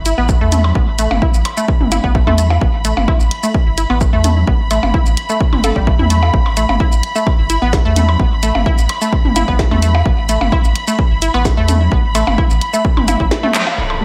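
A saturated sub bass and a squelchy, nasal blip pluck riff with chorus and delay open this cool, clinical minimal techno excerpt, and a punchy, tape-warm electronic kick soon arrives up front, with bass and pluck both pumping against it. Behind them, a distant, woody string section with vibrato adds a dark symphonic layer, while a garage kit with a cracking snare, handclaps, hi-hat and shaker, plus electronic toms and percussion blips in a diffuse ambient delay, keep the groove busy. A drum fill and band accent at 13.5 seconds lead into a brief electronic impact at 13.8 seconds.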